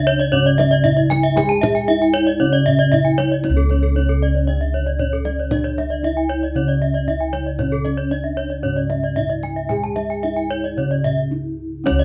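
This Balinese gamelan passage, cut from a longer piece, opens with bronze metallophones and bossed gongs sounding together, joined almost at once at 0.1 seconds by a second arpeggiating metallophone and the kendang. The mood is shimmering and hypnotic in a steady, straight four. The melody metallophone is mellow and airy under padded disc mallets, its paired tuning producing a gentle beating shimmer. A lower metallophone carries the accompaniment with a wooden mallet and a boxy, small-room ring. Two horn-mallet metallophones spin bright arpeggios above, one placed up front and the other close and dry, both glittering with paired-tuning beats. The bossed gongs supply a round, full, soft bass. The tight, acoustic kendang plays a fill from 11.3 to 11.9 seconds, all within a live-room ensemble sound touched by a wet studio reverb.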